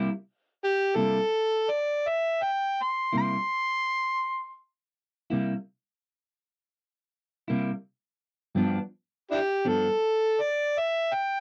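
A slow, straight 12/8 blues sway carries this soulful, gritty excerpt from a dry, close 1970s-style studio, where an up-front, clean, picked semi-hollow electric guitar with harmonic tremolo accompanies from the start until 9.9 seconds while an amplified, overdriven harmonica enters at 0.6 seconds and takes a jazz-style solo full of tongue slaps, scooped notes, light vibrato and slapback echo, all over a C7 chord that moves to G7 at 8.6 seconds within light reverb.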